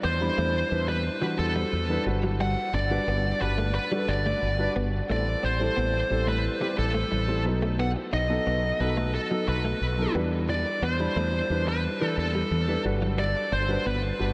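Pop excerpt at 89 BPM in G major, glossy and uplifting, where a dark, distorted high-gain lead guitar carries the melody up front through analog delay over a warm, intimate concert grand piano with audible action noise and short sustain, a round, mellow fretless bass, and a clean, compressed electric guitar riff recorded direct with ensemble chorus and analog delay in the background, the dreamy mix soaked in a huge ambient reverb as the chords move through Em7, Gmaj7, Am7 and B7.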